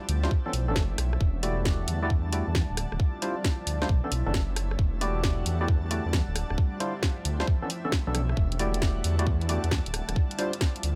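A very quiet, breathy pad and a blurred, evolving granular cloud pad with its own reverb and sidechain pumping open this late-night, soulful two-step garage passage, cut from a longer piece and swung in 4/4. A deep, rumbling detuned saw bass with tube saturation sits up front beside a tight electronic kick and a layered garage kit of hi-hat, rim click and cracking snare, while a hollow, percussive organ stab with lush chorus and tape echo enters at 0.2 seconds. The harmony cycles through Bm11, Em11 and Dm11 in a light reverb.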